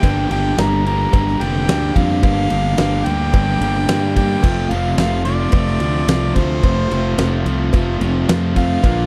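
A brooding, driving classic rock excerpt at 109 BPM opens with everything at once: a smooth-topped harmonica carrying the melody over two guitar riffs, one crunchy and tucked in the background and the other bright and scooped, while a growly, up-front fuzz bass and a huge arena drum kit with a fat snare and punchy kick drive a Gm to F change, with a very quiet cowbell playing along in a dry, close 1970s-style studio sound.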